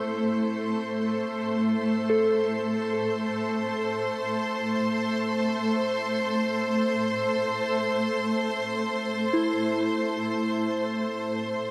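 A granular cloud pad sits up front in this melancholic, spacious ambient fragment, holding sustained chords that feel cloudy, evolving, blurred and full-bodied, its detuned sine voices rising on a slow attack and fading on a long release through their own built-in reverb. A rich studio violin section, also up front, adds a bowed ensemble texture with focused vibrato and a close presence. Alongside them, a soft FM synth bell traces gentle arpeggios, its pure, mellow tone treated with chorus and trailed by tape echo. All three parts play from 0.0 to 11.7 seconds, cut from a longer piece. The whole is bathed in a huge ambient reverb with a 7.5-second decay, giving the sound a spacious depth.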